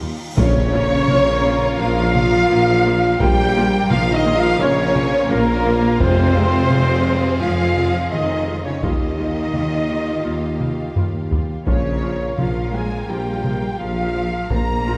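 Heavy-stick taiko drums drive a straight 4/4 pulse through this dramatic, epic orchestral film-score excerpt, which opens on a huge cymbal swell and impact before lush violin sections carry the melody and a second line alongside an airy concert flute, while a dark French horn section and a rich studio string section hold sustained chords over distant viola accompaniment, with mellow trumpet stabs, a bass of cello and double bass sections joined by a roomy tuba, a drum fill at 10.6 seconds, and close, dry timpani hits at 0.4 and 6.0 seconds, set in a wet scoring-stage reverb as the harmony moves from Bbm to Fm, Ebadd9 and back to Bbm.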